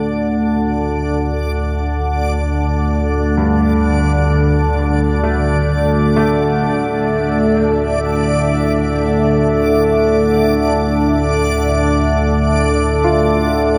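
An organ-like drone sits up front in this unsettling, desolate dark ambient passage, holding a calm, sine-toned sustain from D2 to D3 through ensemble chorus, phaser and its own reverb. Above it, a deep, moody pad built from sawtooth and sine layers with a sub octave holds sustained chords from A3 to E5, its vintage, warbling character shaped by chorus and a mellow softness. A reversed, swelling texture sustains a single D5, bright and detuned with a granular, dreamy grain. In the background, a worn, intimate baby grand piano plays arpeggios between G2 and F4, clear and present with audible action noise, short sustain and a delay trailing each note. The pad, texture and piano all fade in across the full 13.8 seconds in free time, tuned to A4 = 439 Hz, while a huge, wet ambient reverb with a 7.9-second decay surrounds the recording in this excerpt cut from a longer piece.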